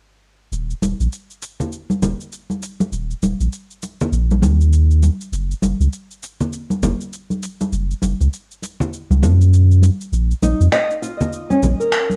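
Recorded at home on cassette with a faint mains hum and light reverb, this short fragment of a longer organic downtempo piece moves at 100 BPM in Eb minor, with a swung 16th-note feel and a meditative, mystical mood. A round, sine-like sub bass sits up front under a filter sweep, while close, dry congas ring out over layered electronic cabasa and finger snaps colored by tape. At 10.4 seconds a dark, fingerpicked nylon-string guitar enters with small arpeggios, bathed in analog delay and shimmer reverb.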